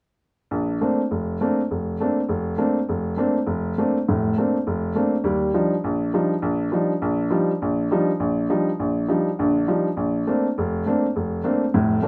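A clear, woody upright piano plays alone in this brief jazz excerpt at 203 BPM with a swung feel in Bb major, moving from Bbmaj9 to Ebmaj9 and back to Bbmaj9 between 0.5 and 12.1 seconds, sitting up front in a moderate studio reverb with an open, searching mood.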